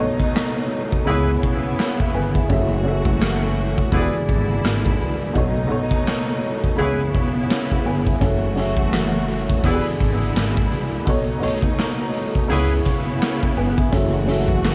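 Boom-bap hip-hop in F# minor at 84 BPM, this reflective, moody clip from a longer piece rides a swung 16th-note groove in 4/4 over a cycling progression of B7, C#m7, F#m7 and E7. A dark, slightly detuned upright piano carries the accompaniment with audible action noise, sitting beside a lush bowed string section holding smooth, vibrato-rich chords, both tinted by filtering and cassette tape grit. Underneath, a woody pizzicato upright bass anchors the low end, while a saturated garage drum kit enters at 0.2 seconds, up front with a punchy kick, medium-tuned snare, hi-hat and handclaps in a bright, pumping stone room. A grainy tube shaker sits far back in the mix, and a distant, roomy horn section drops in at 1.1 seconds with warm, lightly vibratoed stabs soaked in analog delay and tape colour until 12.7 seconds. The whole recording carries a home-cassette character with studio reverb.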